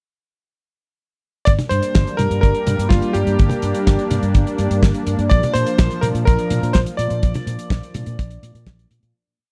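A dry, close 1970s-style studio sound frames this short, melodramatic and danceable italo disco piece, where a tight, up-front four-on-the-floor kick and a damped drum kit with a fat snare, closed hi-hat and high tom pulse alongside a growly, octave-jumping fingered electric bass, a detuned sawtooth unison pad warbles with chorus over Gm and Bb, and an electric grand piano with tape echo rings out clangy hook phrases before the track fades out from 6.6 seconds.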